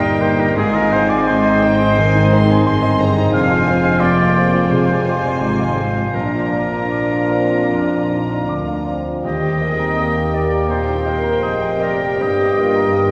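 Classical and lyrically lush in a rubato 4/4, this excerpt puts a clear, up-front grand piano with audible action noise and long sustain on the melody beside a soft-attack chamber violin section played sul tasto, while a darker studio violin section, an airy small flute group, a smooth clarinet and a distant, roomy oboe carry second lines over a very quiet viola section and bassoon, mellow sustained French horn chords, bowed cellos and double basses on the bass, and barely audible calf-head timpani at 9.2 s, all set back in a wet concert hall.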